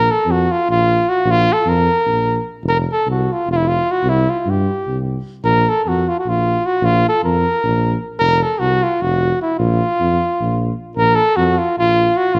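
Balkan folk in a bittersweet, fiery 7/8 at 303 BPM counted in eighths, this short cut from a longer piece sets a warm, present cornet melody with light vibrato up front over a mellow tuba bass line, also lightly vibrato-tinged, both played in a classical style through all 12.4 seconds over Bb5, F5 and C5 harmony, in the moderate bloom of a recital hall.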